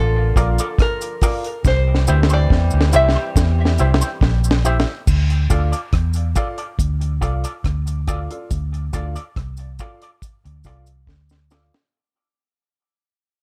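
A small room and an echo-heavy mix give this hypnotic, meditative roots reggae fragment its hazy space. A plunky, fingerpicked open-back banjo carries the melody over a distant horn section with light vibrato and octave doubling, both soaked in tape echo until they stop at 4.6 s, while a round, foam-muted electric bass and a dry, dark drum kit with a high-tuned snare sit up front. A bright, twangy guitar through an envelope filter and tape echo, woody upright piano stabs with audible action noise, and a close cabasa fill out the groove over Bb, C and Dm chords, with drum fills at 1.6 s and 11.1 s and a fade-out from 5.1 s.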